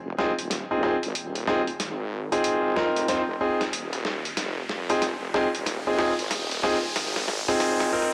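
A heavy, detuned wobble bass opens this playful, funky glitch hop build-up in F minor at 93 BPM with a swung 4/4 feel, joined almost at once by bright, up-front grand piano stabs carrying a 12-bit sampler grit and digital delay on an Fm7 chord, a gritty, pitched-down boom bap drum kit playing a fill on hi-hat, rim click and snare, and an electronic riser from 2.1 s, all set in a plate reverb with a dark production.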